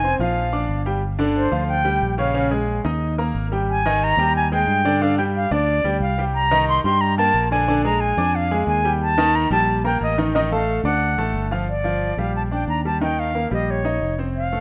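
A bright, airy concert flute carries the melody up front, its close-miked tone soft in attack and expressive with vibrato, fiery and danceable over a straight Latin groove. A clear grand piano supplies the accompaniment across a broad range, its intimate, polished sound marked by audible action noise and long sustain. Beneath them, a fingered electric bass sits low and round, dark and amped in a direct way. All three parts play throughout this short cut from a longer piece, moving through rich harmony that passes from Gm7 through Cm9 and F13b9/A before returning to Gm7 at 11.7 seconds. Light reverb and studio ambience frame a rough home-demo mix.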